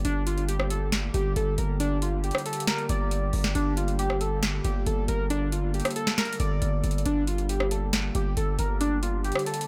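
Warbling lo-fi synth keys carry a nostalgic melody through chorus, phaser and analog delay over a hollow, flute-like pad and a saturated, distorted 808-style bass holding G, while a booming, overdriven analog drum machine with crisp snare, rim click and metallic hats drives this brooding, hard-hitting half-time trap cut in G minor at 137 BPM, set in a dry, echo-heavy mix.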